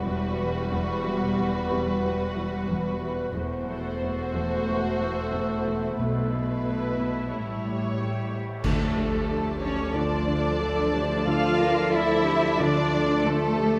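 Muted, con sordino string sections open this uneasy, mysterious suspense cue at 91 BPM in 4/4. Veiled violins carry the melody over a second violin line, a background viola accompaniment, a cello bass, a lush double bass section and a cello riff that enters a moment later. A bubbling sawtooth texture with resonant, random filter steps, chorus and its own reverb holds sustained chords in the background, lending an eerie, unstable shimmer. Dark cymbal swells, clash cymbals and concert bass drum arrive at 6.0 seconds as the harmony moves through suspended and dominant chords away from E minor. At 8.6 seconds the music shifts to D minor with an ensemble accent: articulate, hard-mallet timpani strike in the background, a smooth clarinet adds a second line, and very quiet, roomy French horns and warm trombones sustain chords. A moderate scoring-stage reverb gives the whole ensemble a shared sense of space in this passage, which is cut from a longer piece.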